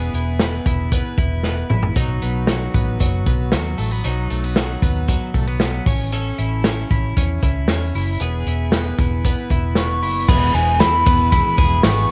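This jangly indie pop cut, taken from a longer piece, moves at 115 BPM in a straight 4/4 with a bright, breezy mood, tuned to A4 = 438 Hz and recorded at home on cassette with studio reverb. A twangy, clean twelve-string electric guitar plays arpeggios through cassette tape and tape echo. Beneath it sit a round, foam-muted fingered electric bass and an up-front, lo-fi vintage drum kit with dark cymbals, a punchy kick and a medium-tuned snare, and the drums play a fill from 1.4 to 2.0 seconds. The chords move from E to B, then to A, and back to E. At 9.8 seconds a hollow, woody clarinet-like synth lead enters with chorus and vibrato, carrying a soft, sustained melody. From 10.3 seconds a full-bodied picked steel-string acoustic guitar and a jingly tambourine join in the background as a new section begins.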